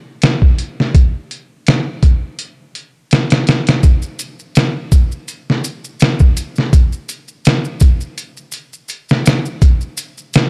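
Hypnotic and brooding, this trip hop excerpt at 83 BPM with a light 16th-note swing opens at 0.2 seconds on a gritty, pitched-down, compressed sampler-style drum kit, with its thumpy kick, medium-tuned snare and hi-hat sitting up front with a small-room character, before close, dry acoustic maracas join at 3.8 seconds, all within a dark digital ambience.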